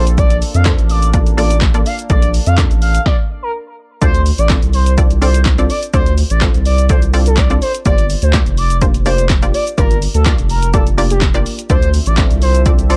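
A smooth, expressive sawtooth lead with portamento, vibrato, chorus and tape echo carries the melody of this energetic, bittersweet dance-pop cut in D minor at 125 BPM, moving through Bbmaj7, Dm7 and Gm7 chords. A thick, saturated sub bass sits up front beside a punchy analog drum machine with kick, snare, handclaps, hi-hat and shaker, while a lush, detuned unison pluck pumps with the sidechain. A resonant, phased pad sits in the background until 3.0 seconds and returns at 11.7, around a brief stop at 3.1, all within a dry, gritty cassette-tape sound.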